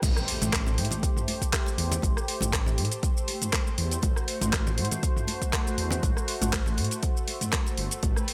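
The overdriven deep house drum kit sits up front, its crash cymbal, handclaps, hi-hat, rim click, shaker and toms riding a deep, overdriven electronic kick at 120 BPM with a light 16th-note swing in this earthy, hypnotic afro house cut from a longer piece. Underneath, a dark detuned saw bass rumbles and beats with a saturated edge, while a smooth analog pad sustains an Am7 chord through chorus, both pumping with sidechain compression. Bright, hard-handed congas sit in the background of the small room, and a background electronic impact marks the drop in its first 2.0 seconds.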